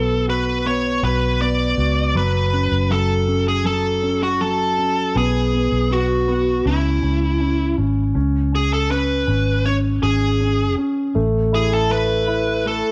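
A smooth, overdriven lead guitar with slapback echo carries a heartbroken melody from the first moment over an open, deep-toned concert grand piano and a dark, round, foam-muted fingered electric bass, in a melancholic pop ballad fragment at 80 BPM in F# minor, moving through Bm, F#m, B5, C#5 and Asus2 in a small room with light reverb.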